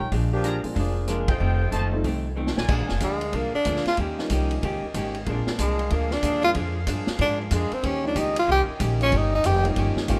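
Big band swing with a brassy, energetic drive, where a mellow saxophone section and clear trumpet stabs open over woody upright bass, clean hollow-body jazz guitar, a dark-cymbaled vintage drum kit and a background upright piano, before a drum fill at 2.4 seconds hands the lead to a breathy, up-front tenor saxophone solo with scooped notes from 3.0 seconds, backed by sustained saxophone-section chords in a rough home demo mix with light reverb.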